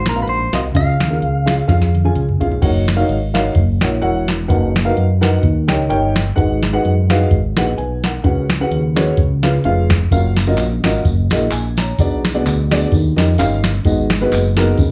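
Soulful and jubilant, this uptempo gospel excerpt moves at 128 BPM in 4/4 with a light swing, set in F# major and cut from a longer piece. A dark upright piano carries the accompaniment throughout, its woody, slightly detuned and boxy tone sitting up front with a slapback echo, while a fingered electric bass underpins it with a round, punchy sound. A soft vintage rhythm box supplies the drums, dry and analog with a deep kick, crisp snare and metallic hats, and it plays a fill at 1.7 seconds just before the music moves into its second section at 2.6 seconds. A clean, compressed electric guitar states a brief picked melody with a scooped tone and slapback echo, stopping at 2.1 seconds. At 10.1 seconds, quiet tambourine, maracas and group handclaps join, close and dry with their own slapback echo, as the chords move through rich sevenths and added tones heard live through a club PA with light reverb.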